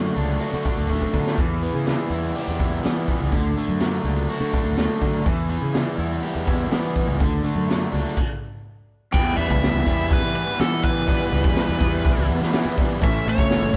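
Two overdriven electric guitars and a growly fuzz bass open this driving, swaggering classic rock cut together, with one guitar cranked and bright up top and the other compressed in the background, all moving in a straight 4/4 at 124 BPM in E dorian. A raw garage drum kit lands at 0.4 seconds, up front and gritty, with a punchy kick, medium-tuned snare, hi-hat and crash, and a pumping small-room sound with a rolled-off top. The riff rides a D to Em vamp, marked early by a drum fill and later by a stop just before the band shifts ground. At 9.1 seconds a nasal lead guitar with a parked wah takes the melody, joined by a very quiet, boxy plugged-in swing-style acoustic guitar, a grainy shaker tucked close and dry in the background, and a barely audible tonewheel organ holding sustained chords through a slow rotary speaker with key click. The harmony stays on Em before turning to A near the end, and the whole band sits in a moderate stone room, playing live together.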